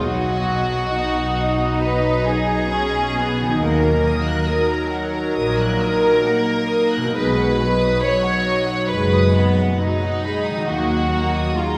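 Cinematic, emotional orchestral film score at a rubato 68 BPM in 4/4, sorrowful and moving, with its harmony alternating between B and Ebm across this short cut from a longer piece. A rich, intimate violin section carries the high melody with light vibrato and soft sul tasto bowing, while a second violin section sits up front on a pure, floating line and violas add distant accompaniment. A French horn section holds sustained chords in the background, a ringing fingerpicked concert harp plays arpeggios, and close cellos join dark, woody double basses on the bass until 11.4 seconds, all set in the wet reverb of a concert hall.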